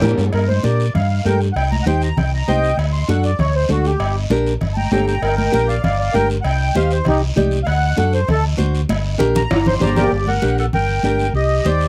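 A fiery, danceable cumbia cut from a longer piece, moving at a brisk 196 BPM in G harmonic minor with a straight 4/4 feel. A reedy, sweet accordion with light tremolo tuning carries the melody up front, taking a solo from 0.3 to 10.1 seconds over a cycle of Gm, Cm, D and D7. Beneath it, a round, punchy hollow-body electric bass sits forward in the mix, and a fingerpicked nylon-string guitar with fresh strings adds classical accompaniment. Bright, hard-handed congas sit in the background alongside a raspy, saturated guiro, while ringing metal-shell timbales and cowbell sound distant in a large room, and a drum fill arrives near the end of the solo. A clear, forceful clarinet with light vibrato returns in the background at 9.7 seconds for a jazz-style second line as the music shifts into a new section. The whole recording is dry and close, with a vintage studio character.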